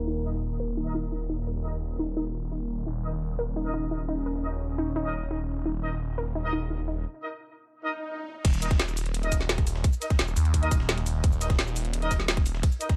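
This dark, technical drum and bass excerpt at 172 BPM feels futuristic and mechanical, opening with filter sweeps across a bright, resonant pad, a warbly lo-fi pluck arpeggio with dub echo, distant classical-style brass stabs and a swirling, saturated detuned saw bass up front, with the pad, pluck and bass pumping against the sidechain. After a break from 7.1 seconds and a brief electronic swell, the drop arrives at 8.4 seconds with a tight, up-front electronic kick, a layered kit of woody snare, metallic hats, shaker and crash cymbal under low-pass filtering, and a very quiet, gritty sampler-style breakbeat of ride and snare, all set in a filtered digital ambience.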